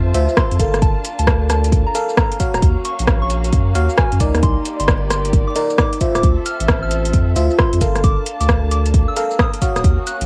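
Bouncy and soulful, this two-step UK garage cut swings at 133 BPM: a punchy, up-front electronic kick and a tape-softened house kit of metallic hi-hats, rim clicks and shaker ride over a thick, saturated sub bass, while glassy FM electric piano stabs soaked in chorus, phaser and analog delay, a pure, mellow synth bell melody from 0.4 s, and veiled, con sordino violins holding lush, sidechain-pumped chords cycle through Dm9, Gm9, Ebm9 and Cm9, joined in the opening 0.8 s by a barely audible downlifter, on a dry, homemade cassette recording dusted with vinyl crackle.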